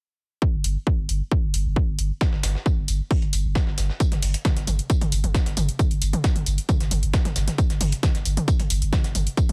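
An overdriven, layered kick drum hits up front at 0.4 s, joined almost at once by a thick, saturated sine sub bass pumping under sidechain and a low-pass filter, while a punchy analog drum machine adds tape-warm hi-hats and toms that also pump. At 2.2 s a gritty, compressed sampler-style kit arrives with hi-hat, a medium-tuned snare and tambourine, high-pass filtered and re-recorded in a large room. This intense, driving peak-time techno cut from a longer piece moves into a new section at 4.0 s, all set in a digital ambience.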